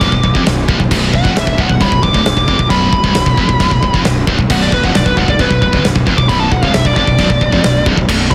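Dark and aggressive, this heavy metal passage in B minor drives at 134 BPM in a straight 4/4, with a high-gain lead guitar soloing from B4 to D6 through distortion and delay, its tone warm and picked. Behind it, a pair of scooped, bright rhythm guitars play a low riff in the background alongside a growly fuzz bass, while a big acoustic rock kit sits up front with a tight kick, a medium-tuned snare, and china and crash cymbals under a rolled-off top. At 4.5 s a very quiet, double-tracked, compressed guitar joins the riff, all within a dense, heavily limited modern master with studio reverb.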